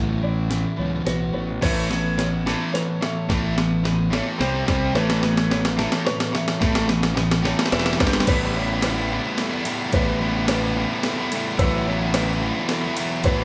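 A straight 3/4 pulse at 108 BPM drives this euphoric, hopeful post-rock passage in A mixolydian, tuned slightly sharp to A4 = 444 Hz and cut from a longer piece. A compressed, sampler-style boom bap kit, gritty and tape-toned with a thumpy kick and a high-tuned snare, enters up front at 0.5 seconds, and a drum fill runs through the opening build-up. Beneath it, a dark, round, punchy fuzz bass is fingered low with overdrive, while a thick, dark fuzz guitar picks a distorted riff, joined at 1.6 seconds by a bright, overdriven electric guitar riff pushed forward in the mix. Further back, a clean, compressed twelve-string electric guitar picks arpeggios until 8.3 seconds, a soft, felt-muted upright piano adds mellow, vintage arpeggios, and a warm pedal steel guitar holds sustained slide chords with volume swells. The chords move from Bsus4/A through Aadd9, C5, E5 and G5 into Em/A and back to Bsus4/A, all set in a moderate large-room reverb that captures the band playing live together.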